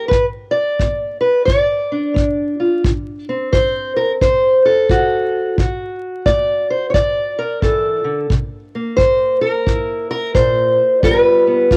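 Rollicking and laid-back, this short fragment of swung acoustic country blues puts a dark, woody, boxy fingerpicked parlour steel-string guitar up front carrying the melody over G, D7, C7 and G7. A punchy kick drum played with brushes in a small room sits up front alongside it, and the whole home cassette recording carries light reverb and a bed of vinyl crackle.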